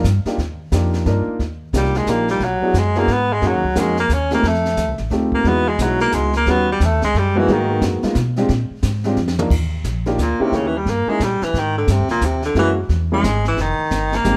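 A warm, punchy baritone saxophone leads this playful small-group swing and bop excerpt, coming in at 1.8 seconds with scooped notes, vibrato and a forceful jazz attack, its plate reverb giving it a roomy, distant sheen even as it sits up front. The tune moves at a brisk 177 BPM in 3/4 with a swung eighth-note feel, running through rich harmony that starts on Ebmaj9 and passes through altered dominants before settling toward Fm11. A clear, natural upright piano supplies accompaniment throughout, while a pizzicato upright bass with steel strings adds a woody, thumpy bottom. The brush kit sits lower in the mix, an acoustic small-room sound with dark cymbals, a high-tuned snare and a boomy kick, and it plays a short fill just before the saxophone returns at 10.2 seconds. Moderate studio reverb ties the group together into a natural sound.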